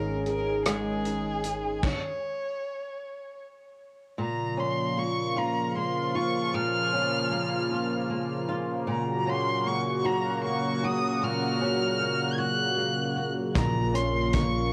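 A bowed violin with smooth vibrato carries the melody from the opening, over fingerpicked flamenco guitar, a bright, detuned sawtooth pad with chorus, a filter swell and a slow attack, woody pizzicato upright bass, and a tight, natural-sounding drum kit of kick, hi-hat, rim click and crash. The bass falls away at 1.8 seconds and the drums at 2.0 seconds, leaving violin, guitar and pad to carry this dramatic, melancholic six-eight pop ballad until the rhythm section returns at 13.6 seconds. The violin wears a tape echo, and every part but the bass shares a cassette haze from a home recording in a small, dry booth.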